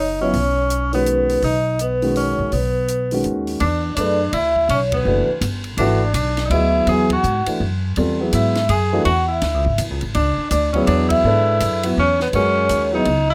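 Open and hypnotic, this modal jazz excerpt swings in 3/4 at 165 BPM, moving from B major into E mixolydian at 3.6 s, with a mellow soft-mallet vibraphone carrying the melody through plate reverb and a fast motor vibrato, a smooth-topped tenor saxophone adding an up-front second line with scooped notes and light vibrato, a woody pizzicato upright bass, a dark concert grand piano comping with deep bass, and a dry compact cocktail drum kit with dark cymbals, a high-tuned snare and a punchy kick, all set in a snug booth ambience and punctuated by band accents at 4.9, 7.1 and 11.1 seconds.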